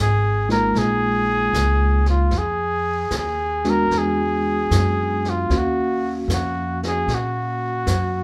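A breathy trumpet, up front with a jazz-style vibrato, opens this smoky, wistful jazz ballad at 76 BPM with a swung solo over woody pizzicato upright bass, the band playing live together in one large studio room with moderate reverb. At 0.5 seconds a warm, clean tine electric piano, heard through its built-in speakers, joins alongside a distant, roomy brush kit with a rolled-off top, its brushed snare and hi-hat sitting low beneath the horn. The harmony moves from Db69 through Fm7 and E9 to Ebm9 in this short excerpt cut from a longer piece.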